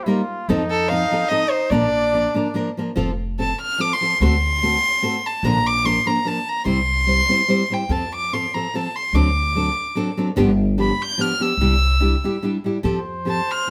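A band playing live in one room is caught with light reverb, the bowed violin and fingerpicked nylon-string guitar sitting up front. This is a romantic, proud stretch of mariachi folk in F major, moving in 3/4 at 146 BPM with swung eighths and a rubato pull. A solo trumpet with vibrato and a warm, classical-style tone opens as a second line and drops out at 2.8 seconds, returning briefly near the close. From 0.7 seconds a single violin carries the melody, ranging from A4 to G6, its gut-string tone reedy, close and period in style. The bright guitar, with fresh strings and a classical touch, fills out the accompaniment, while a pizzicato upright bass on steel strings gives a woody, growly, thumpy foundation. The harmony passes through D7, G7 and Cadd9 before settling on Fadd9, and the piece is cut from a longer performance.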